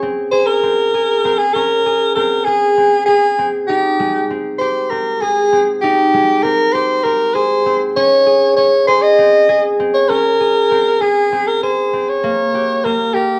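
Contemporary instrumental music in 7/8 at 196 BPM (eighths), restless yet hopeful, in a short cut from a longer piece. A mellow, ringing concert harp plays fingerpicked arpeggios from the start, and at 0.3 s a growling soprano saxophone takes the solo melody with raspy grit, vibrato, scooped notes and a jazz style. The moderate recital hall reverb lends space as the harmony moves from Db5 through Abmaj7 and back to Db5, then shifts to Bbm6 at 12.2 s.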